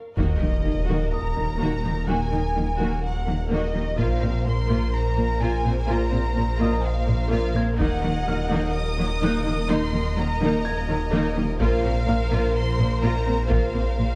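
In a straight 4/4 at 126 BPM, this vast, relentless stretch of hybrid orchestral and electronic film score sits in Eb dorian, cut from a longer piece and alternating between Eb minor and Bb sus2. A huge, dark sub drop opens the passage as a background impact lasting to 2.1 seconds. Very quiet taiko drums struck with hard sticks sound in short bursts through a small room, with a longer final run from 11.6 seconds. Beneath it all, a thick, swirling detuned saw bass with a phaser and saturation sits up front, its fast attack and sustained tone joined in the low register by a rich, expressive cello section. The violins carry the melody with a smooth, even top, while a second, clear violin section sounds intense but distant and a bright viola section plays close-up accompaniment, all bowed and lush with vibrato. Far back, a soft felt-muted upright piano adds an intimate, mellow texture with audible action noise, and the whole is set in a moderate recital hall reverb with a dark, warm production.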